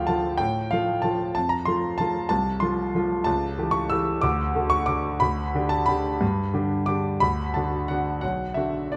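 Heard up front in a moderate recital hall reverb, an intimate concert grand with deep bass and audible action noise plays solo through this elegant, graceful classical waltz in 3/4, its uneven, rubato beats lending a lilting sway to a 9-second passage cut from a longer piece.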